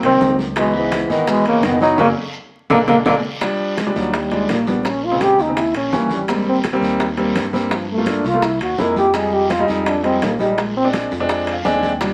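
Moderate studio reverb and a layer of vinyl crackle frame this sophisticated, sunny slice of Afro-Cuban jazz, cut from a longer piece and moving at a brisk 168 BPM in a straight 4/4. A clear tenor saxophone with soft-attacked vibrato sits in the background for the opening bars before dropping out at 3.1 s, while an up-front concert grand piano comps throughout with an intimate, polished tone, deep bass, long sustain and audible action noise. Underneath, a bright, growly fingered electric bass holds the low end, and a percussion bed of tight, high-tuned bongos struck with hard hands, ringing metal-shell timbales, very quiet medium-tuned congas and a raspy guiro drives the groove. A drum fill and band accent lead into the key change to Eb major at 3.4 s, where the mellow trombone, punchy and forceful with a smooth top and light vibrato, takes an up-front solo over lush changes such as Ebmaj7, Abmaj9 and C7alt. 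The piano adds a brief fill near the close, just before 12.0 s.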